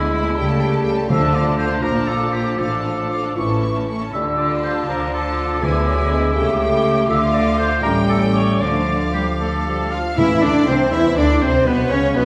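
A restless, stormy classical-period movement for symphony orchestra in D minor opens at once with strings, winds and horns together. The tempo sits around 76-83 dotted-quarter beats per minute in a flexible, rubato 6/8. A lush, expressive studio violin section carries the melody with rich vibrato. Around it, a focused chamber violin section, a distant solo oboe and an airy flute ensemble in the background weave second lines. A mellow solo bassoon and a very quiet, smooth-topped viola section fill in the accompaniment, punchy French horns hold sustained chords, and bowed cellos and an intense double bass section anchor the bass. Timpani with calf heads and medium mallets strike briefly at 1.1, 5.6 and 10.2 seconds, the last entry marking a turn from D minor harmony toward Cadd9 and Bsus2 as this fragment of a longer piece breaks off, all set back in a reverberant scoring-stage space.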